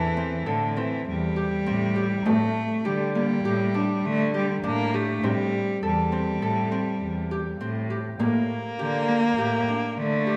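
Moving in an uneven 5/4 at 101 BPM with a straight feel, this restless, urgent contemporary chamber piece in A phrygian alternates between Am7 and Gmadd9/A over a wet concert-hall reverb. A ringing, fingerpicked Celtic harp spins arpeggios while a clear, smooth bowed cello carries the second line. Beneath them a rich bowed cello anchors the bass with expressive vibrato and portamento. A small, bright frame drum, very quiet and vintage-toned, enters at 0.8 seconds with hard hands, and the passage breaks off at 10.4 seconds as part of a longer work.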